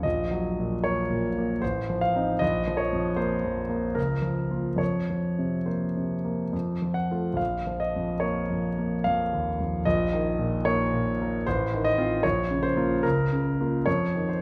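Passionate and stormy, this romantic character piece for solo piano unfolds in Bb minor at a rubato-shaped 67-79 BPM in 3/4, cut from a longer piece and lasting 14.4 seconds. A concert grand carries everything alone, its intimate, polished tone with deep bass and audible action noise sitting up front, ranging from A1 to Gb5. The harmony circles through minor chords and F dominant and suspended colours, all wrapped in a large studio's wet reverb that places the listener further back in the room.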